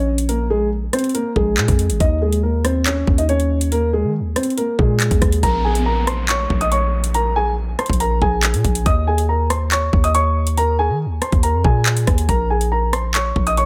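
A light reverb gives this short cut from a longer drill track a cold, dark space, with the piano, bass and drums all placed up front. At 140 BPM in a half-time 4/4 feel and in Bb minor, a dark concert grand piano carries the melody from the start, its mellow, boxy tone with deep low end softened further by a low-pass filter. Underneath, a hard-hitting 808-style bass with a sine body, a noise layer, a fast attack and a decaying tail hits punchy and heavy, shifting between Bbm7 and Eb5. The electronic drill kit arrives at 0.2 seconds with a knocking kick, metallic hi-hats, handclaps and rim clicks. A quiet electronic downlifter sounds from 5.4 to 8.9 seconds as the second section begins, before the piece returns to Bbm7 near its close.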